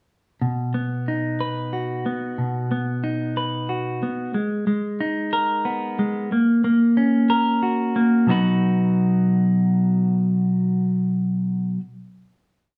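A clean, compressed electric guitar sits up front playing picked arpeggios in this short, soaring and euphoric solo post-rock piece at 92 BPM in 3/4, moving through B, G#madd9 and F#/A# in B major before settling on a final B chord at 8.3 seconds, all wrapped in a wet studio reverb with the live feel of a single room.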